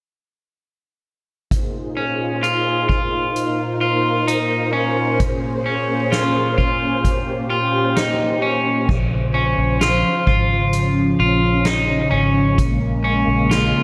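A moderate plate reverb gives this dream pop excerpt a haunting, ethereal glow, with a straight 4/4 pulse. From 1.5 s, a vintage string machine voiced as violas holds sustained chords with a soft attack, its sawtooth tone mellow and up front, shimmering with ensemble chorus and a moving notch. Alongside it, a drum kit played with soft mallets brings dark cymbals, a medium-tuned snare, hi-hat and a boomy kick in a natural, hall-like sound. At 2.0 s, a brilliant, twangy electric guitar at the edge of break-up enters with picked arpeggios, sitting forward in the mix with subtle chorus and tape echo. From 8.9 s, in the second section, a foam-muted fingered electric bass adds a round, punchy low end beneath the chords moving between Dbmaj9 and Bbm7.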